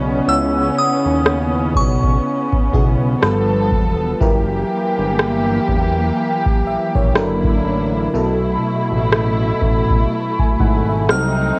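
A glassy synth bell melody with chorus and phaser opens this longing, late-night contemporary R&B excerpt at 61 BPM over a lush, dreamy FM electric piano with a soft pad layer, dark con sordino strings, and a fat, saturated sawtooth bass moving from C#m9 through F#7b9 and B7sus4, before a booming, dry analog drum machine with a deep kick and rim click enters at 1.3 seconds with a cassette tape effect, and the crystalline bell returns at 11.1 seconds over a Cdim7 in a lightly reverberant home cassette recording.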